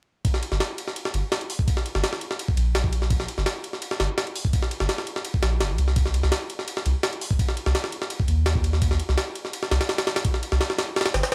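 A jungle sampler-style drum kit opens at 0.2 seconds, its pitched-up, gritty hits of kick, snare, hi-hat and ride sitting up front with a thumpy kick, high-tuned snare and the compressed, tape-warm sheen of a kit re-recorded in a large room. A soft dub sub bass joins at 0.5 seconds, deep and round with a fast attack and sustained notes between F1 and Eb2, roughened by tube saturation. This dark, frenetic drum and bass cut in G minor races at 168 BPM in straight 4/4, dry and dusted with vinyl crackle.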